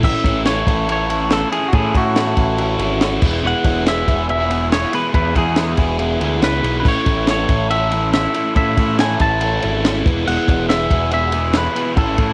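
A dry home cassette recording carries this carefree, wistful indie rock passage at 140 BPM in A major, cut from a longer piece and moving through Amaj7, E, A and E. A clean, twangy, fingered electric guitar carries the melody over two picked, overdriven guitar riffs, one swirling with phaser and a lower one sitting in the background with subtle chorus. A growling, overdriven picked bass and a compact cocktail drum kit, with its punchy kick, high-tuned snare and dark crash and ride cymbals, drive all 12.3 seconds.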